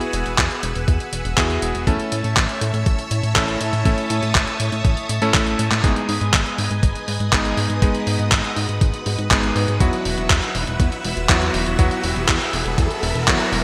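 Bright 1980s-style digital production in a lush hall gives this playful, danceable italo disco excerpt at 121 BPM its sheen, with a full, phased and chorused string machine holding sustained chords, a cutting electric grand piano stabbing through vintage 12-bit grit and digital delay, a gritty, up-front sampler kit of handclaps and hi-hat under gated reverb, a glossy, dark synth bass with tube saturation, and a thumpy electronic kick, while a drum fill and band accent lead into a second section at 5.8 seconds and a very quiet riser creeps in at 8.9 seconds.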